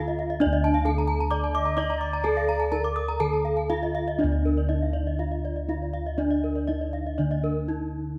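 Hypnotic and brilliant, this short gamelan passage in D pelog moves at 120-134 BPM in a straight 4/4 and is cut from a longer piece. A bronze metallophone struck with a wooden mallet carries the melody throughout, its paired tuning producing shimmering beats with an airy ring. Two more bronze metallophones weave arpeggios above it, one played with a horn mallet for a bright edge and the other with a wooden mallet, while bossed gongs hit with padded beaters sit up front in the bass, round, mellow and softly beating in a boxy small-room sound. A close-miked xiao adds a bright, airy, bamboo-toned second line with vibrato and a soft attack, stopping at 3.4 seconds. The ensemble rings out in a moderate recital hall reverb, shifting into a new section at 4.2 seconds.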